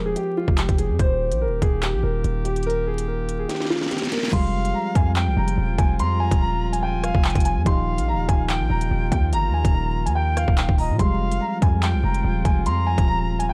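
Hip hop drill in F minor at 144 BPM with a half-time feel, menacing and ominous. A dark, boxy grand piano melody sits over soft, warbling electric-piano-like synth keys with chorus and a mellow brass ensemble holding sustained chords, while a punchy, heavy 808-style bass drives it from the start and an up-front drill kit joins at 0.2 s; the kit has a hard-clipped kick, sharp snare, crisp hats, handclaps, rim clicks and crash. A drum fill and a very quiet reverse cymbal lead into the second part at 4.3 s, where a pure, distant silver flute with vibrato and tape echo enters as a second line, all in a dry, warm production with vinyl crackle over Fmadd9 and Ebadd9 chords, cut from a longer piece.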